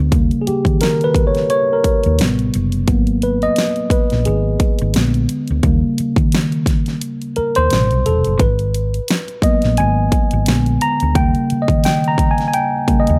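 A worn, slightly out-of-tune tine electric piano leads this late-night, sultry neo-soul R&B excerpt, soloing up front from 0.0 to 13.2 seconds with a lightly overdriven tone through a combo amp. Beneath it, a hollow-body short-scale electric bass, played with the fingers, supplies a dark, round, amped low end. A produced, layered electronic pop drum kit joins at 0.1 seconds, sitting up front with a punchy kick, a fat snare and hi-hat. The groove moves at 87 BPM in 4/4 with a 57% sixteenth-note swing, tuned slightly flat to A4 = 437 Hz. The harmony cycles through D#7, Am7, G#m7 and A#7b9 twice before landing back on D#7, all wrapped in a digital ambience.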